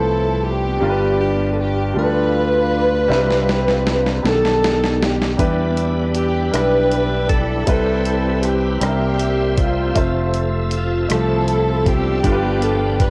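Slow, uplifting gospel in 6/8 at 52 BPM in C major, where a breathy alto saxophone with scooped notes and lush bowed strings carry the soulful melody over clear baby grand piano accompaniment and a round, punchy fingered bass, before a gritty, compressed sampler-style drum kit enters with a fill at 3.1 seconds and a bright, shouting tonewheel organ adds sustained chords through a slow rotary speaker from 5.4 seconds, the whole home cassette recording bathed in light studio reverb.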